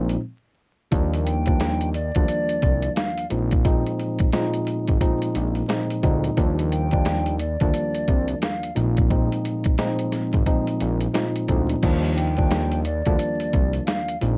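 A worn, slightly out-of-tune tine electric piano with light overdrive and a fat, detuned sawtooth analog bass open this confident, warm boom-bap hip-hop excerpt in Eb major at 88 BPM with swung 16ths, cycling between Bb9sus4 and Ebmaj9. At 0.1 seconds a gritty, compressed, pitched-down sampler drum kit joins with a thumpy kick and high-tuned snare, and at 1.2 seconds a mellow, hollow, close-miked silver concert flute adds a tongued melody with vibrato, all in a home cassette recording touched with vinyl crackle and light reverb.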